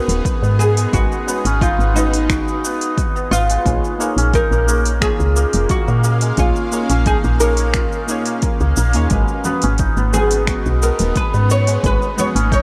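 A straight 88 BPM groove in 4/4, built from a punchy, overdriven electronic kick and a produced kit of finger snaps, metallic hi-hat and shaker, drives this hypnotic, meditative organic downtempo excerpt in G# dorian. A round, dark FM bass sits up front beneath a deep, plectrum-plucked fretless oud melody with delay, shimmering hammered santur arpeggios, a soft chorused chord stab with cassette-tape colour and sidechain pumping, and a tense, detuned string-like drone under phaser and reverb, as the harmony moves from G#m to A#m at 3.7 s and back at 9.1 s before background congas join at 9.5 s.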